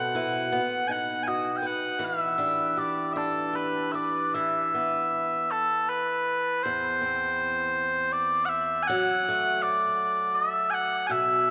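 Celtic folk slow air in E minor at 80 BPM in a rubato 3/4, mournful and haunting, where mellow, sweet small bagpipes carry a continuous solo melody up front while a bright, boxy picked swing-style acoustic guitar accompanies beneath through chords such as Bsus4, Em7 and C/E, all bathed in a wet cathedral reverb in this short cut from a longer piece.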